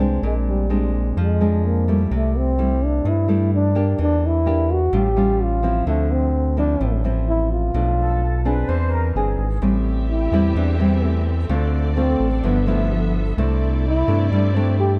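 A straight 4/4 bossa nova pulse at 128 BPM carries this wistful, melancholic piece in D minor, cut from a longer work. A breathy trombone sings the melody with a dark, whispered, intimate tone, soft attacks, scooped notes and light vibrato. Thumb-plucked nylon-string guitar sits up front in a classical, acoustic voice, while a round analog bass, deep and mellow with an evolving sawtooth-and-sine character touched by ring modulation, sits a little louder than the other parts. At 8.0 seconds a pure, tongued flute section adds a brief, expressive second line. From 9.6 seconds the trombone moves into a jazz-style solo as a muted, con sordino string section enters with veiled, lush bowed chords, over harmony that passes through Am7, Dm7 and G13 to a closing C69, all under light reverb.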